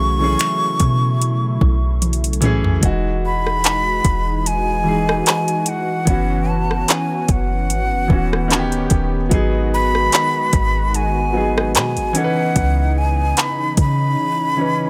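A breathy jazz flute carries the melody up front, its soft-attack tone shaped by vibrato, lifted highs, an unsteady quality and a trail of delay. This sensual, moody contemporary R&B passage moves at 74 BPM in 4/4 with a light sixteenth-note swing. Beneath it, a grand piano with audible action noise adds intimate, natural accompaniment, while a detuned sawtooth analog pad holds sustained chords through chorus and sidechain pumping. A deep, round 808-style bass sits up front with a fast attack and dark decay. An electronic drum kit of finger snaps, handclaps, metallic hi-hats, soft kick, rim clicks and toms arrives at 0.4 seconds with an overdriven edge, and plays a fill just before the harmony shifts from B13sus4 to Emaj9 at 2.8 seconds. The chords then travel through F#7sus4, D#7alt and G#m7 to C#m9, and the drums drop out at 14.2 seconds, leaving the flute, piano and pad to carry the dry, close mix to the end.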